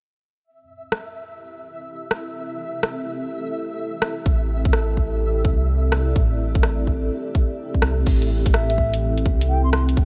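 A swung 4/4 groove at 126 BPM drives this rainy, melancholic slice of future garage in A minor, cut from a longer piece and resting on an Am7 chord. A flickering, grainy texture on E5 appears first at 0.7 seconds, followed by a garage drum kit with bright hats, crash cymbal and rim clicks in a small room, and then a cloudy, evolving granular pad that breathes with sidechain pumping under its own reverb. At 4.3 seconds a tight, up-front electronic kick and a deep, rumbling detuned saw bass arrive, the bass beating and pumping up front as the mix's low-end foundation. A clean tine electric piano sits in the background through delay, while a mellow baroque flute with airy vibrato and tape echo carries a brief melody near the end, from 8.7 seconds. The production is dark and warm with light reverb.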